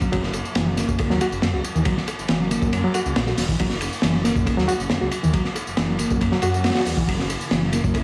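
Breakbeat with a swaggering, funky strut, built on a crunchy, up-front drum kit with a punchy kick, dark cymbals and gritty tape echo, plus a faint tambourine and very quiet congas and bongos tucked beneath. A reedy electric piano riff with fast tremolo, tube saturation and tape echo rides over a thick, menacing detuned saw bass that enters at 0.1 seconds. An electronic swell sounds in the background at 6.4 seconds before a swirling, airy phased pad with chorus and sidechain pumping arrives at 7.4 seconds, all set in an echo-heavy mix with light small-room reverb, cut from a longer piece.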